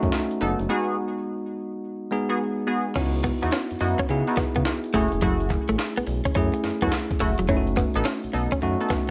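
New jack swing R&B with a punchy, bouncy mood, this short cut from a longer piece moves at 106 BPM in 4/4 with a heavy 16th-note swing, sitting in C# minor and tuned slightly flat of standard pitch. A gritty, compressed breakbeat kit sits up front, its pitched-up sampler character giving a thumpy kick, a high-tuned snare, hi-hat and crash cymbal, all with a tape-warm edge. Beneath it, a smooth synth bass blends sawtooth and triangle tones with a touch of ring modulation and vibrato, while a bell-like tine electric piano rings bright and clean in the accompaniment. A funky polysynth throws in mellow sawtooth-and-square stabs with filter sweeps, chorus and delay, and after a break that ends at 3.0 seconds, a direct-recorded clean electric guitar enters with a picked riff under subtle chorus, joined at 3.2 seconds by a very quiet, crisp group handclap. The harmony moves from B7/F# and G#m7 into C#m11 and F#m7 before returning to B7/F#, all set in a light reverb.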